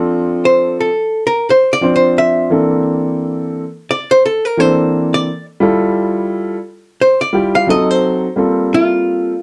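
Hip hop at 87 BPM with a 16th-note swing, this cool, mellow excerpt in G dorian pairs a woody, vintage upright piano accompaniment with a clean, compressed archtop guitar melody that enters at 0.5 s. The hollow-body jazz guitar solos over chords moving from Dm7 through C13/E, Fmaj9 and F#dim7 to Gm11, with both instruments sitting up front. A wet studio reverb and a dark, warm production tie the sound together.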